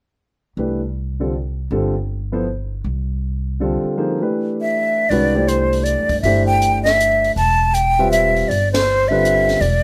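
A natural-sounding grand piano and a woody, growly pizzicato upright bass open this hypnotic modal jazz excerpt in a swung 3/4 at 159 BPM, resting on a Cmaj9 chord in C major from 0.6 seconds. A breathy metal flute with vibrato, a soft attack and lifted highs takes the melody up front at 4.6 seconds. At 5.1 seconds a quieter acoustic drum kit joins with dark cymbals, a high-tuned snare and a boomy kick, and the band hits an accent near the close under light reverb.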